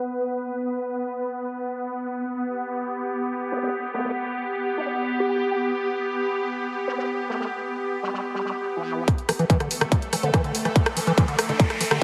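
A bright, morphing wavetable pad holds sustained, pumping chords under a filter sweep from the start of this driving, intense psychedelic trance excerpt in E minor at 143 BPM. A nasal, wobbling vowel-sweep bass joins at 3.5 seconds. From 9.1 seconds a distorted, up-front kick and an overdriven techno kit of hi-hat and rim click enter, followed at 9.3 seconds by a squelchy liquid acid bass riff with dub echo and at 9.8 seconds by a background riser, all building over a Dsus2 chord in a lush hall.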